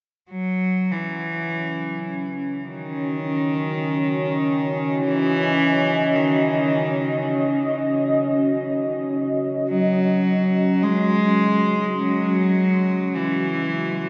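Ambient in free time and E-flat Phrygian, tuned to A4 = 442 Hz, this desolate, cavernous excerpt opens at 0.3 seconds with a single bowed cello playing a low, floating melody, its rich, pure sul tasto tone softened by a diffuse ambient delay. At 1.7 seconds a deep, dark pad enters with sustained chords over an Ebm7 harmony, its detuned sawtooth unison, sub octave and wave-folded, ring-modulated texture thickened by chorus and its own reverb. The whole passage sits in a huge, wet reverberant space with an eight-second decay.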